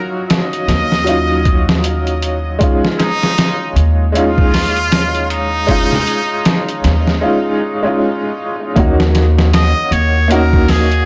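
Brooding and melancholic, this trip hop excerpt in Eb minor moves at 78 BPM with a swung 16th feel, opening on a slightly detuned, clear upright piano with tremolo and tape echo beneath a distant, nasal trumpet with a straight mute singing a classical-style solo line with vibrato. Gritty, pitched-down sampler-style drums with a thumpy kick and overdrive arrive at 0.3 s, followed at 0.7 s by a woody pizzicato upright bass on gut strings holding a low Eb, while the harmony shifts between Ebm9 and Dbadd9/Eb. After a break at 7.2 s, the music settles onto Ebm7, all within a blown-out, overdriven sound with light studio reverb.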